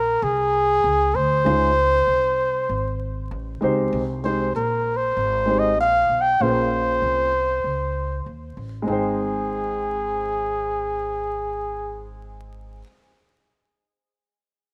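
Warm yet cool, this jazz-hop fragment puts a veiled, bucket-muted trumpet up front with forceful, vibrato-laced jazz phrasing over a woody pizzicato upright bass, while a dark, mellow grand piano with audible action noise joins at 1.4 seconds, the whole set in light small-room reverb and vinyl crackle that give it a rough home-demo feel.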